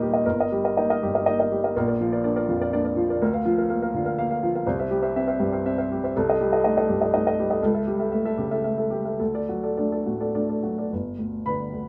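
A baby grand piano opens this short cut from a longer romantic character piece, played solo in 3/4 at a flexible 102-126 BPM with a free, rubato feel. Its tone is warm, natural and up front, spanning G1 to B5. The harmony begins in borrowed colours, moving from Eb/G through Bb and Bb/D. From 4.7 s it settles into G major via C, Am7b5/C, A7/C# and D, then arrives on G at 10.9 s. The mood is hopeful, and a moderate studio ambience gives the instrument a modest, intimate room around it.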